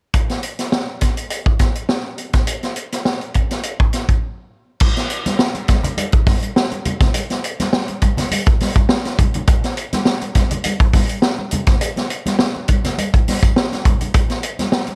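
A vintage acoustic drum kit opens this sly, cool funk excerpt at 0.1 s, playing a straight 4/4 groove at 103 BPM with kick, snare, hi-hat and crash cymbal. The kit sits up front in a studio room, its sound mid-forward with a rolled-off top: a punchy kick, a high-tuned snare and dark cymbals. A short break arrives at 4.2 s, and at 4.8 s the congas join the drums for the second section. The congas are bright and thin-skinned, medium-tuned and played with soft hands, their tone compressed and saturated as they sit in the background. Light reverb gives the whole track a touch of space.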